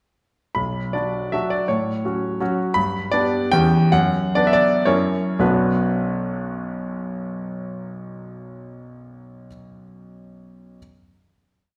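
A clear concert grand piano plays alone from 0.5 seconds, carrying a single-line melody over bass and chords that lean on the second or third beat, its sound intimate and up front with deep bass, short sustain and audible action noise. This brief, wistful romantic dance in triple time moves with rubato and dotted rhythms, slowing from 2.2 seconds before settling on a final chord at 5.4 seconds. A wet recital hall reverb surrounds the polished tone with a nostalgic glow.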